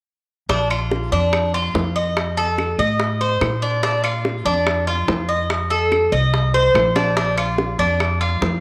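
From 0.5 s, a picked, metallic Cuban tres with doubled strings and a slapback echo plays up-front arpeggios over a thumpy, dark, gut-string upright bass and tight, high-tuned bongos, with woody claves joining at 0.7 s, tucked in the background, in a relaxed, danceable Cuban son and guajira groove at 144 BPM in Bb major, tuned to A4 = 435 Hz, alternating Bb and F7 inside a wet echo-chamber reverb and marked by a drum fill at 7.0 s in this short excerpt.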